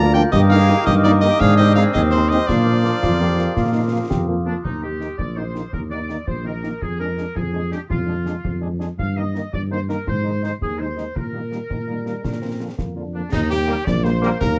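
This festive, spirited military-style march for wind band in 6/8 is cut from a longer piece. A solo cornet carries the melody with a clear, smooth, classical tone, while a distant, roomy woodwind section with light vibrato adds a second line throughout. At the opening, a bell-like glockenspiel played with soft plastic mallets rings out high above, alongside a very quiet, airy flute ensemble that stops at 4.1 seconds and returns briefly at 13.1 seconds. Further back, a punchy euphonium adds its own second line at the start and again toward the end, a warm French horn section supplies accompaniment, and a tight, vintage-sounding trombone section holds sustained chords in the opening bars and again just before the close. An up-front, mellow tuba anchors the bass, and close, acoustic snare drum, clash cymbals and bass drum drive the march with bright cymbals, all in a dark production with little reverb.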